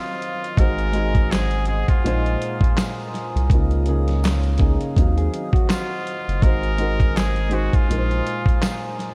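A hazy, reflective lo-fi hip hop excerpt in Eb dorian at 82 BPM, with a lightly swung 16th-note feel, opens on a dark, woody upright piano, a breathy trumpet with a straight mute and the glassy, ethereal shimmer of a glass harmonica, all softened by a low-pass filter. The dusty soul sampler-style drum kit comes in at 0.2 seconds, sitting up front with a thumpy kick, a medium-tuned snare, hi-hat and handclaps, all roughened by gritty 12-bit sampler texture. At 0.6 seconds a deep, round dub sub bass joins, also up front, and from 1.3 seconds a jingly tambourine sits in the background. The nasal, whispered trumpet carries the jazz-styled solo melody close to the ear with light vibrato and a diffuse ambient delay. The piano's vintage mellowness and the harmonica's beating, band-limited tone hold the chords beneath it. Briefly in the middle, a clean, dark electric guitar adds a fingered second line in the background, trailing its own diffuse delay, over a progression that moves from Ebm69 through Ab7, Bb9sus4 and Db69 and back again under light studio reverb.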